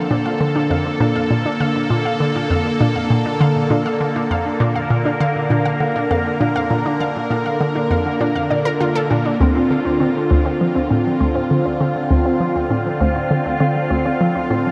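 Ambient, sequencer-driven space music at 100 BPM in 4/4, mysterious and cosmic, set in a vast, echoing space with a huge reverb tail. An up-front, swirling analog pad holds sustained chords from Bbmaj7 to Dm7 at 9.4 seconds, treated with phaser, chorus and shimmer reverb, while a lush, detuned unison pluck spins bright arpeggios through tape echo and shimmer. Beneath them a hollow, bouncy square-wave pluck repeats a low riff with chorus, phaser and tape echo, all in a short passage cut from a longer piece.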